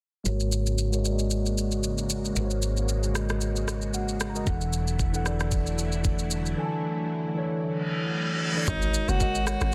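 Amapiano at 114 BPM with a lightly swung 16th feel, soulful and hypnotic, built on a mellow, low-pass-filtered tine electric piano, a vintage sawtooth string machine of violas pumping under the beat, a round, woody fretless bass with lush chorus, and a smooth electronic R&B kit of knocking kick, rim click and shaker, as the harmony moves between G#9sus4 and E9sus4 under a long filter sweep. An electric piano fill arrives at 3.7 seconds, and a reverse cymbal from 7.8 seconds leads into the drop at 8.7 seconds, where an impact hits and a hollow, bouncy FM log drum bass and an edgy, breathy alto saxophone with tape echo enter. The mix is dry, dense and heavily limited.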